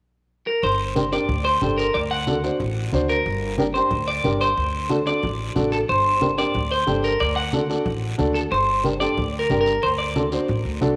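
Cumbia in G harmonic minor at 183 BPM, this passionate, danceable excerpt puts a twangy, up-front clean electric guitar melody with spring reverb on top from 0.5 seconds, joined at 0.6 seconds by growly pizzicato upright bass, low-tuned congas set back in the mix and a raspy guiro, with a boxy, mellow upright piano entering at 1.0 seconds to accompany through a Gm-D7 progression in a moderate plate-reverb space.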